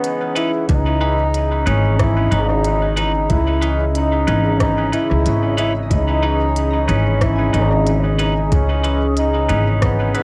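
A distant, roomy trombone melody opens this deep, meditative ambient dub excerpt at 92 BPM in C# dorian over a slow-attack, detuned pad holding a C#m9 chord, a very quiet fingerpicked harp arpeggio and crisp electronic hi-hat and rim clicks, before a compressed, twangy clean electric guitar adds phaser-tinged stabs with dub echo at 0.4 seconds and a growly, up-front pizzicato upright bass and soft background electronic kick arrive at 0.7 seconds, all carrying the character of a home cassette recording.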